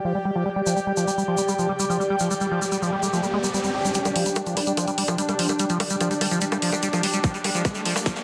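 A dense, heavily limited mix in a moderate digital room opens this intense, psychedelic trance excerpt at 146 BPM, where a squelchy, resonant acid bass riff sits up front under filter sweeps and sidechain pumping, beside a bubbling stepped-filter texture holding sustained chords and an airy, breathy pad with phaser. A grainy, band-limited tube shaker joins at 0.7 seconds and a riser murmurs in the background from 1.6 seconds, before layered electronic hi-hat and bongos arrive at 4.0 seconds to start the build-up. A tight electronic kick drum lands only at 7.2 seconds with a drum fill that closes the passage.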